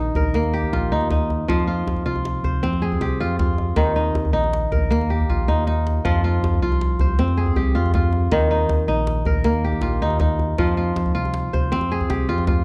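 A bright, ringing kora leads this flowing, hypnotic excerpt of West African string music, its crisp fingerpicked arpeggios sitting up front over a straight 12/8 feel and chords that move between Eb and F minor. Beneath it, a smooth synth bass with a sawtooth, ring-modulated edge holds sustained low notes, while a tight, cracking djembe played with hard hands enters at 0.1 seconds and breaks into a fill from 5.3 to 6.0 seconds. The production is dark and lightly reverberant, with the djembe sounding close.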